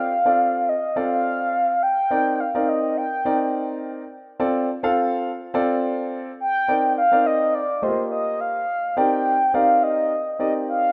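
Funk at 105 BPM in C dorian, this danceable, slick piece cut from a longer work sets a round, horn-like synth lead, its soft-attack, sustained tone carrying vibrato, chorus and slapback echo, on a melody up front, over a warm concert grand piano with deep bass that accompanies through Dm7, Cm9 and F9sus4, all bathed in a lush hall reverb in a rough home demo mix, with a brief new section arriving at 9.0 seconds.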